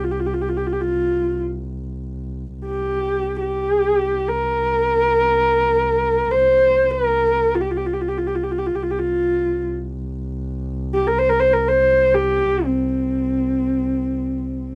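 A dark, husky horsehead fiddle carries a solemn, windswept Mongolian folk melody in free time, bowed up front with soft attack, vibrato and portamento over a woody bowed double bass drone on a low C, heard for about 14.8 seconds in a dry, close 1970s-style studio sound with light reverb.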